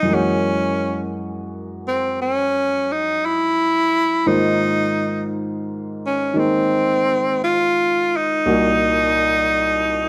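A dark, intimate studio sound with moderate room reverb frames this short, melancholic jazz ballad fragment in a slow, swung 4/4. A bright tenor saxophone with vibrato carries the solo melody up front in a narrow middle register, its tone lifted by plate reverb. Beneath it, a concert grand piano with deep bass plays natural-sounding accompaniment through chords of Gb9, Ab69 and Cm7b5.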